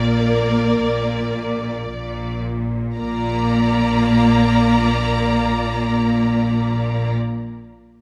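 Tender and lyrical, this brief fragment of a slow romantic classical movement for string orchestra in Bb major moves at 52-61 BPM in 4/4 with rubato, easing back over the first 3.0 seconds before a new passage begins: a violin section carries the melody with soft-attack vibrato while a second violin line spans Bb4 to Bb5, a distant, rich viola section accompanies, and an even cello section pairs with a woody double bass section on the bass, all bowed across the 7.1 seconds in a moderate scoring-stage reverb.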